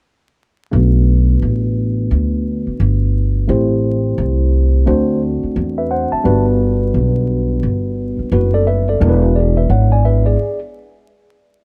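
A woody, thumpy pizzicato upright bass sits up front in this cool, smoky hip hop excerpt at 87 BPM in B minor with a swung 16th feel, playing alongside a worn, slightly out-of-tune tine electric piano heard through its built-in speakers under a low-pass filter sweep, moving from Bm7 through Am7, D7 and Gmaj7 to E7 in a dark, small-room production flecked with vinyl crackle before both parts stop by 10.6 seconds.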